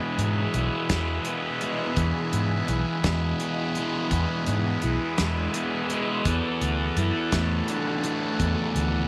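Psychedelic rock in a hazy, trippy 6/8, this short cut from a longer piece is led by a thick, double-tracked fuzz guitar riff, dark and up front with distortion and phaser, over a buzzy, overdriven vintage combo organ holding sustained chords through spring reverb. A round, punchy foam-muted electric bass and a dry, damped 70s acoustic kit with a tight kick, medium-tuned snare and hi-hat enter at 0.2 s. The harmony rests on E before shifting to Bm7 at 6.3 s, all within a light room reverb and some lossy compression artefacts.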